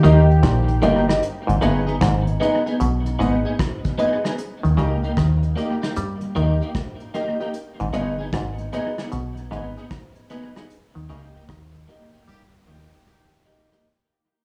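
An echo-heavy studio mix frames this meditative, serious roots reggae piece, with a deep, round dub bass sitting up front beneath a soft brush kit of hi-hat, tight kick and rim click touched by analog delay. A twangy clean electric guitar with chorus and tape echo, woody upright piano stabs and a nasal, overdriven muted clav riff fill the middle, while a tight horn section with light vibrato sits in the background, heard briefly at the start and again from 12.3 seconds. The music fades out from 1.2 seconds, with a band accent arriving at 10.7 seconds.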